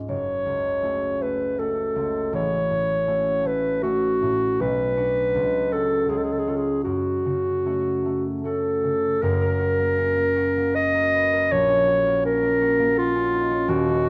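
Elegiac and melancholic, this romantic classical duo for clarinet and harp moves in a rubato 3/4 at roughly 75-83 BPM, tuned to A4 = 442 Hz. The concert harp supplies the accompaniment from the first moment, its fingerpicked acoustic tone warm and ringing across a deep span from D#1 to B4, while the clarinet enters at 0.1 s to carry the melody between E#4 and D#5. The clarinet sounds clear and classically styled, played solo and up front and sitting a touch above the harp, which is also placed close. The opening dwells in F# minor, leaning through Bm7 and a C# chord before settling back on F#m, and at 9.2 s the harmony turns to F# major for the closing phrases. A moderate recital hall reverb gives the pair a natural sense of space, and the passage, cut from a longer piece, ends at 14.1 s.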